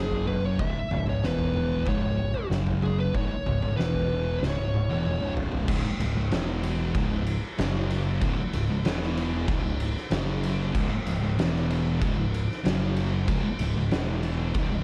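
A brooding, heavy stoner and doom metal excerpt at 94 BPM in C# minor opens with a compressed fuzz lead guitar carrying a short melody through slapback echo, over a pair of thick, dark fuzz guitars grinding out a low riff in the background and an overdriven, growling picked bass. An oversized, low-tuned acoustic drum kit sits up front with a punchy kick, fat snare and dark cymbals in a saturated, gritty stone-room sound, and it plays a fill from 4.4 seconds as the lead melody stops at 5.3 seconds. From 5.7 seconds a bright, double-tracked third fuzz guitar joins the riff very quietly, while the chords cycle through power chords on C#, E and F# in a dark, lightly reverberant mix.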